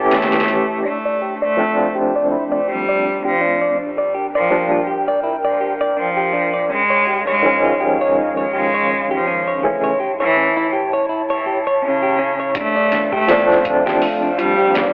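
A dry, gritty, telephone-thin recording with light reverb carries this dark, melancholic trip hop excerpt at 82 BPM in D minor, where a bright, barky tine electric piano with overdrive, tremolo, sampler grit and tape echo sits up front beside a rich, focused bowed cello melody with vibrato, over a warbling, nostalgic lo-fi pad and a deep, round dub sub bass in the background, while a clean, fingered electric guitar arpeggio enters at 0.8 seconds under a filter sweep, and a muffled, pitched-down sampler-style drum kit with a thumpy kick plays only a brief opening break before returning at 12.5 seconds.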